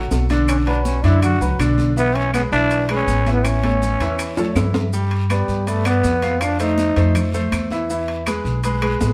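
Sunny and danceable, this salsa excerpt at 162 BPM puts a growling, gritty trombone solo with scooped notes and vibrato up front from 0.5 to 7.3 s, over a brilliant upright piano with audible action noise, a thumpy gut-string pizzicato upright bass, high-tuned congas, ringing metal-shell timbales, woody claves, raspy guiro and grainy maracas, with a drum fill at 3.4 s as the chords move from Bm through A, G and F7 to E in a moderate stone-room reverb.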